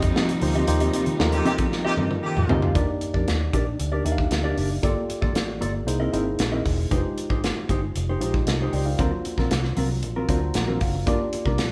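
A lush studio string section with vibrato and portamento opens this polished 1980s jazz-funk pop excerpt in Eb major, joined from the start by a worn, slightly out-of-tune tine electric piano, a mellow, compressed electric guitar riff, a round, foam-muted fingered bass and an up-front studio drum kit with a punchy kick and rolled-off top. The mood is upbeat and glossy at a straight 115 BPM in 4/4, and the opening bars carry a band accent and a drum fill. A distant, roomy jazz-style horn section adds a brief second line from 1.3 s, and the strings fall away at 2.7 s, leaving the rhythm section to carry on over rich harmony moving from Ebmaj7 through Gm9, Fm9 and altered dominant chords. Near the end the electric piano steps forward with a fill at 10.0 s before the passage lands on Gm7. A moderate stone room reverb gives the sense of a band playing live together, with the dark bass sitting prominently in the mix.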